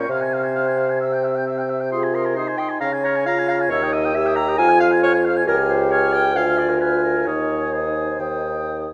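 Restless and dramatic, this quick classical-period movement for wind quintet moves at 133 BPM in a straight 4/4 and sits in Ab major, cut from a longer piece. The silver concert flute carries the melody high above the ensemble with a pure, crisp-attacked tone and expressive vibrato, though it sounds somewhat distant. Beneath it, the oboe sings a second line with light vibrato, while the mellow clarinet, entering at 0.1 seconds with a soft attack, and the punchy French horn fill in the accompaniment. The bassoon anchors the bass up front, its tone the most present of the group. The harmony turns darkly through chords such as Fm, Dbmaj7#11 and Ddim before settling on Eb, and a moderate concert hall reverb lends the ensemble a roomy sense of space.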